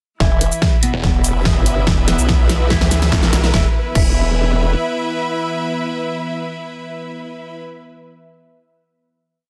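Heavy wobble dubstep at 144 BPM in a half-time feel, this short, aggressive piece builds from 0.2 seconds with a drum fill, a punchy electronic kick and an overdriven kit of huge snare, bright hats, shaker and crash, while an up-front formant-sweep wobble bass shifts its wobble speed, a snarling distorted saw bass growls in with chopped phrases at 0.9 seconds, a very quiet riser adds transition effects, bright bowed strings with vibrato and a lush, thick chorused pad pump under the beat, and a clean picked electric guitar repeats an octave riff in the background through a phaser, low-pass filter sweep and tape echo before everything resolves into a final chord at 3.5 seconds over light reverb and a dense, heavily limited master.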